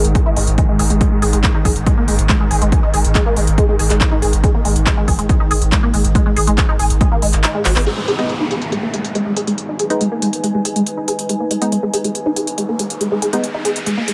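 Driving peak-time techno in G# minor at 140 BPM, relentless and dark, opens with a thick saturated sub bass and a swarming, detuned drone pumping together, joined at 0.2 seconds by a punchy layered kick and a squelchy, resonant blip pluck riff with phaser and dub echo that runs through to the end. The kick drops out at 7.4 seconds, and after a drum fill and band accent the bass and drone give way at 7.9 seconds to a downlifter, crisp wavetable chord stabs with 12-bit grit and digital delay in the background, and a moody, evolving ambient pad from 9.4 seconds. A riser climbs over the smooth filtered hats, handclaps and crash of the drum kit, all set in a light digital ambience.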